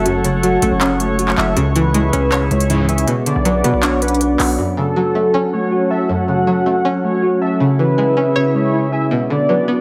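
Soaked in dreamy plate reverb, this melancholic, hard-hitting trap cut at 159 BPM in half-time F# minor cycles through F#m, C#m and Bm, with a worn, slightly out-of-tune tine electric piano playing up-front arpeggios over a twangy, string-like resonator pluck with phaser, a nostalgic, lo-fi tape-like pad holding sustained chords, and a velvety synth lead with vibrato and tape echo carrying a second line, while a heavy, aggressive distorted 808 bass and a crisp-hatted drum kit with handclaps drive the opening until about 4.6 s, a fat, bold polysynth stab flashes briefly in the background at 2.7 s, and the piece continues past the end of this cut.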